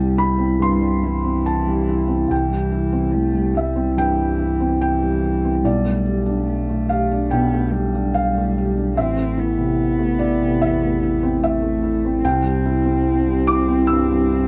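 This fragment of a longer piece moves at a gentle 72 BPM in 4/4, its rubato feel letting the pulse breathe freely. It is neoclassical piano and strings in C major, intimate and tender in mood, with the chords moving from C to Gadd9/B at 5.6 seconds, Am at 9.0 seconds, and back to C at 12.2 seconds. A felt-muted upright piano carries the accompaniment up front, soft and mellow across a span from A1 to E6. Beneath it, a single bowed cello adds a dark, woody second line, played sul tasto with vibrato and heard close. A soft dub sub bass, deep and round with a fast attack and sustained notes, sits low between A1 and C2. Light reverb gives the whole a gentle sense of space.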